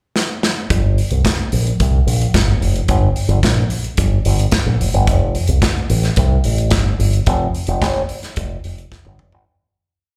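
A punchy fingered electric bass with an envelope filter carries a syncopated disco line in a glamorous, danceable piece. It comes in at 0.7 seconds, after a short drum fill opens the pickup bar, over an airy, polished studio drum kit with a tight kick and a four-on-the-floor beat with open hats on the off-beats, and the sound is that of a live gig through the venue's PA with club reverb before it fades out from 7.3 seconds.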